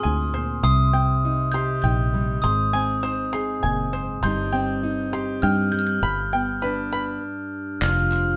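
A bell-like glockenspiel, struck with soft plastic mallets and sitting up front in a boxy small-room sound, carries the melody from the first moment. Beside it are a full-bodied, fingerpicked jumbo steel-string acoustic guitar and a twangy, percussive bluegrass banjo played with fingerpicks. This is yearning, bittersweet indie folk in C minor at 100 BPM in a straight 3/4, cut from a longer piece, with a round, dark, foam-muted electric bass joining almost at once. The chords move from Fm through Cm, Ab and Cm/G to G. The banjo drops out at 7.2 s, and at 7.8 s the arrangement builds as the harmony returns to Fm: a shimmering, octave-doubled twelve-string acoustic guitar enters with a touch of finger squeak, alongside a crisp group handclap and a grainy tube shaker in the background. The band plays live in one room, with moderate studio reverb giving the sound a natural space.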